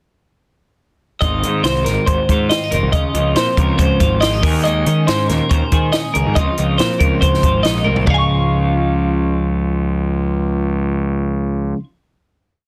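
A dense, heavily limited modern master with little reverb frames this short, complete math rock and midwest emo piece in Db major, moving at 140 BPM in a straight 4/4 with an intricate, bright mood. Two clean, twangy twelve-string electric guitars carry the harmony: one plays a compressed ostinato accompaniment in the middle register, while the other rolls fingerstyle arpeggios up high, touched with spring reverb. Underneath, a fuzz-drenched picked electric bass drives a punchy, syncopated riff with overdrive, sitting up front in the mix. A compact cocktail drum kit, dry and natural with a high-tuned snare and a punchy kick, lays down a funk groove from 1.2 seconds until a drum fill at 7.9 seconds. The chords move through Ab69, Dbmaj9 and Eb7sus4 before the guitars and bass settle onto a final Dbadd9 at 8.1 seconds, ringing out to around 11.9 seconds.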